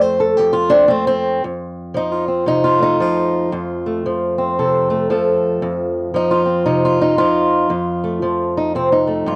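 A fingerpicked old ladder-braced acoustic guitar opens this short cut from a longer piece of acoustic country blues, its dark, boxy tone sitting up front in a dry, close 1970s-style studio sound with light reverb. The mood is soulful and rollicking at 115 BPM in 4/4 with a swung eighth-note feel, rooted on F in F mixolydian and ranging from F2 to C5. After a brief opening passage, a new section begins at 1.4 seconds and carries the solo guitar through to 9.4 seconds.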